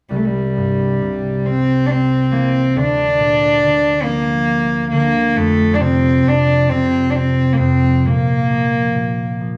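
A single bowed cello carries the melody up front, its sul tasto tone pure and floating with a soft attack and a distant, warm glow, in this tender, nostalgic Celtic slow air excerpt in 6/8 with uneven, rubato beats. A concert harp sits equally close beneath it, thumb-plucked and ringing as it accompanies through chords moving from C to Bb/D, F5 and Bb5. The two play live together in a reverberant stone room from 0.1 seconds, the cello falling away at 9.4 seconds as the harp rings on to 9.6 seconds.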